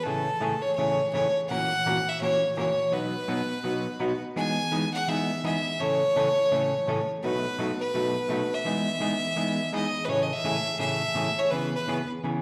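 This short excerpt of swinging country opens with a clear, earthy fiddle carrying the melody, bowed by a single player with light vibrato and sitting close and up front. At 0.1 seconds an electric hollow-body archtop guitar joins underneath, picked with a dark, clean tone and a slapback echo on its accompaniment. The mood is playful and down-home, with swing on the eighth notes and a harmony moving through Amaj7, F#7/A#, B, Emaj7 and B7. Around 10.1 seconds the music turns to a new passage, shifting from Amaj7 to C#m7 as the fiddle finishes its line at 12.1 seconds and the guitar rings on briefly after it. The sound carries the feel of a live gig heard through a venue's PA, with a moderate club reverb giving the two players some space.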